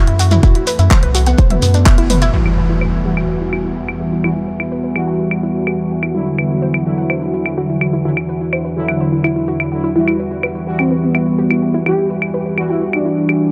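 Melodic techno at 126 BPM in E minor, cinematic and dark, opening with a punchy, up-front kick, a round analog bass, grainy shekere and a smooth portamento lead over a deep, moody pad, a resonant overtone-sweeping drone, a warbling lo-fi pluck arpeggio and a small-room house kit of claves, handclaps, hi-hat and toms. At 2.3 seconds the bass, kick and shekere have dropped away and an electronic impact lands as bold, fat analog synth brass stabs take over with dub echo, while the lead's vibrato melody returns at 10.0 seconds. Sidechain pumping moves the lead, pad, pluck, brass, bass and drone, all inside a dark production with light reverb.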